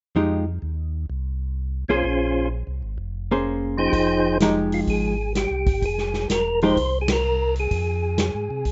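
A rough home-demo mix with a dull, capped top end and a moderate studio reverb frames this bluesy, soulful soul jazz organ trio excerpt in F minor, swinging at 127 BPM in 4/4 over Fm9 and Bbm9 chords. A round, clean tonewheel organ with key click and a slow rotary speaker carries the bass line, while an up-front, compressed hollow-body electric guitar accompanies with clean picked playing until 6.8 seconds. A lightly overdriven, percussive tonewheel organ with chorus vibrato and a fast-spinning rotary speaker takes the melody from 1.9 seconds, and a vintage acoustic kit with dark cymbals, a medium-tuned snare and a punchy kick joins at 3.9 seconds, leading to a band accent at 7.0 seconds.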